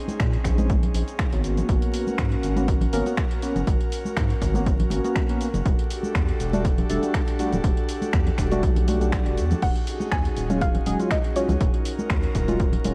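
A swung 121 BPM deep house groove in Eb minor, built on an up-front, tape-warm electronic kick with gritty analog drum machine crash, finger snaps, hi-hat and shaker, damped high-tuned congas set in the background and a round, dark analog bass pumping beneath, supports airy breathy pad chords and glossy chorused polysynth stabs that carry a filter sweep and tape echo through Bbm11, Abm11 and Em11, until a soft, gentle pluck melody with cassette character enters at 9.6 seconds over Ebm11, all in a deep, smooth, fairly dry mix dusted with vinyl crackle.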